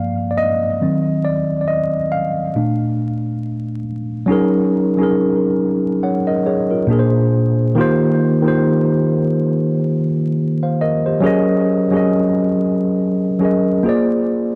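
Nostalgic and cosy, this 69 BPM hip hop fragment of a longer piece sets a lone mellow tine electric piano, worn, slightly out of tune and up front with a cassette-tape tint, over a lightly swung 16th feel, moving through jazzy chords from Gm7 to Bb7 under a moderate plate reverb and vinyl crackle, with a shift in character at 4.3 seconds.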